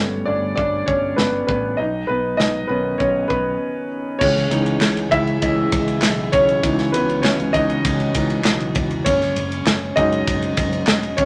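Warm and hopeful, this piano-driven pop excerpt moves at 99 BPM in a straight 4/4, led from the start by a dark, woody upright piano that sits up front and carries the solo over Gadd9, Badd9 and then C#madd9 chords, with a bright fretless electric bass underneath and a punchy, airy country drum kit entering at 0.6 seconds with kick, snare, ride and crash. After a brief break, a soft, flute-like tonewheel organ joins at 4.2 seconds with background sustained chords through a slow rotary speaker, showing key click and vibrato, while a very quiet, crisp group handclap arrives at 4.8 seconds. A moderate club reverb rounds out the mix.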